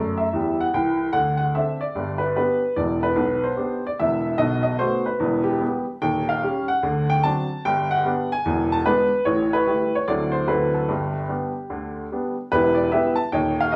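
A lone upright piano opens this short, playful stride-jazz fragment, swinging from the first bar and spanning deep bass notes up into the upper register. The instrument sounds woody, worn and slightly detuned, sitting up front in a large, reverberant room. The harmony moves through colorful seventh and ninth chords before a new passage begins at 12.5 seconds, and the piece is cut off at 13.8 seconds.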